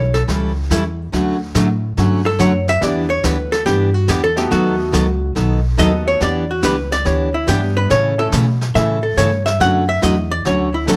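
An excerpt of playful, swinging western swing in D major at 142 BPM opens on a dark, clean hollow-body archtop guitar soloing up front over woody pizzicato upright bass, soft brushed snare and hi-hat, and a full-bodied picked dreadnought acoustic guitar picking through the changes from A7 through Em7 and B7 back to Dmaj7, while a bright, brilliant upright piano with short sustain sits in the background from 2.8 to 8.3 seconds, all in a moderate club reverb.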